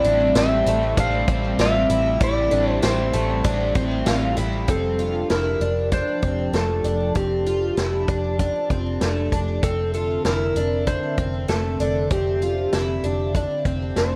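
A clean lap steel guitar carries the melody in this blissful, floating dream pop excerpt, its slide lines blooming out of volume swells and trailing off into delay. Beneath it, a picked twelve-string acoustic guitar spins shimmering, woody arpeggios thickened by octave doubling, lush chorus and delay. A swirling, detuned sawtooth pad holds sustained chords with a slow attack and long release, colored by phaser and chorus. A biting, overdriven double-tracked electric guitar sits in the background with harmonic tremolo and lush chorus, dropping out at 5.2 s. The straight 4/4 groove at 97 BPM rests on a dark, round, foam-muted fingered bass and a vintage drum kit with a punchy kick, medium-tuned snare, hi-hat, tambourine and a rolled-off top. The harmony moves from Am7 to F69 at 4.7 s in F major, all set in light reverb and a small room ambience.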